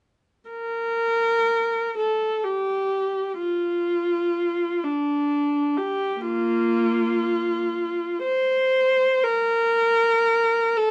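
Nostalgic and serene, this short classical excerpt features a single bowed viola playing an expressive, free line in Bb major at a slow, rubato 51-67 BPM in 3/4, tuned to A4 = 436 Hz. The viola sounds up front, focused and warm, with vibrato and a smooth top as it ranges from Bb3 to C5 between 0.5 and 10.9 seconds. A light reverb surrounds the solo instrument.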